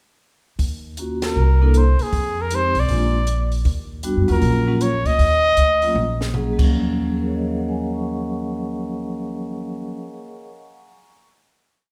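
Swinging at 157 BPM in 4/4, this short, smoky jazz piece in E-flat minor has a close-miked trumpet playing a motif-based melody with light vibrato, a woody, growly upright bass in a two-feel, syncopated rootless comping on airy, ringing vibraphone with fast motor vibrato, and a dry cocktail drum kit keeping time on the hi-hat with dark cymbals. A band accent lands at 1.2 seconds, and a drum fill from 6.0 seconds leads at 6.7 seconds into a final chord held in a moderate recital-hall reverb.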